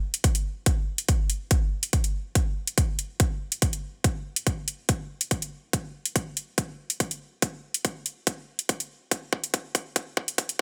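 Aggressive and heavy, this heavy wobble dubstep clip moves at 142 BPM in a half-time 4/4 feel and works as a build-up, with a filter sweep running its whole length. Up front, an electronic kick drum, punchy and overdriven with a small-room ambience, drives alongside layered, metallic electronic hi-hats that also carry a touch of small-room reverb, and a drum fill runs from 5.7 s to the end. The master is dense and heavily limited, with a high-pass filter shaping the sound.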